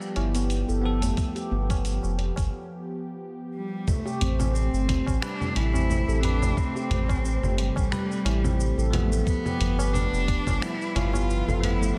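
Hypnotic and meditative, this organic downtempo passage, cut from a longer piece, rests on a smooth, detuned analog pad with chorus and sidechain pumping, a round sub bass sitting up front, and ringing, airy handpan arpeggios trailed by tape and slapback echo, while a bell-like tine electric piano in the background carries a filter sweep through the opening seconds. A gritty, dusty sampler-style kit of congas, finger snaps, hi-hat and shaker, re-recorded in a large room, joins a thumpy electronic kick and low-tuned, close, dry tabla for a gently swung groove that breaks from 2.5 to 3.9 seconds. At 3.5 seconds a single bowed cello enters with the melody, expressive with vibrato and portamento, over a light reverb as the harmony settles from G7 to Am7 and back.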